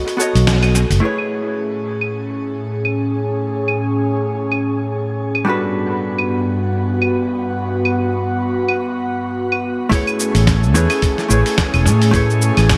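A dark, clean hollow-body jazz guitar opens this sunny sunset chillout excerpt at 108 BPM under a filter sweep, dub echo and shimmer reverb. It is joined by a gritty, dusty sampler-style kit of filtered hi-hat, fat snare, cabasa and claves with tape echo, a brief round, up-front fretless bass touch, and then an airy, breathy chorused pad at 1.0 seconds that carries sustained Amaj7 and Gmaj7 chords through its own filter sweep. A thumpy electronic kick arrives at 9.9 seconds and the bass returns at 10.3 seconds, all in an echo-heavy chamber space.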